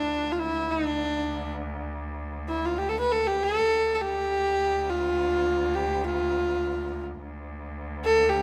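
A single bowed kamancheh sits close and up front, carrying a bright, earthy melody between D4 and B4-29c with light vibrato and sliding portamento. Beneath it, a distant cello holds a warm drone on D2, its own vibrato and portamento making the sustained tone quietly expressive. This brief, hypnotic and soulful fragment of makam ensemble music unfolds in a recital hall with moderate reverb lasting about 1.8 seconds.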